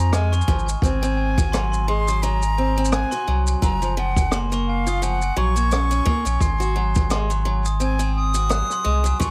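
Delicate and hopeful, this folktronica excerpt moves at 86 BPM in Ab mixolydian with a gentle 16th-note swing, circling through Ab7 and Gbmaj7. A breathy, close-miked silver concert flute carries the melody in straight tone, while a bell-like glockenspiel with brass mallets rings a vintage second line above woody, boxy arpeggios from a picked archtop guitar on old strings, all three washed in plate reverb and delay. Underneath, a round, mellow sine sub bass sits up front, a rim click and shaker enter at 0.1 s, and a boomy, rolled-off kick drum joins at 0.5 s in a lightly reverberant studio room.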